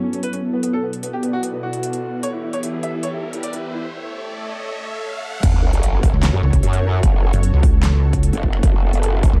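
Heavy wobble dubstep at 150 BPM in a half-time 4/4 feel, menacing and dark in F# phrygian. This cut from a longer piece opens with a clear concert grand piano melody with delay over a lush, sidechain-pumped supersaw pad under a filter sweep, a cloudy granular pad in the background, and a big-room dance kit with a huge snare and crisp hats; an electronic riser builds from 3.0 seconds and the piano drops out into a break. At 5.4 seconds the drop hits with an overdriven, punchy kick and an aggressive, growling bass with chorus and formant-filtered wobble, joined from 6.1 seconds by a pulsing, detuned pluck wobble bass, both saturated and up front in a dry, dark production.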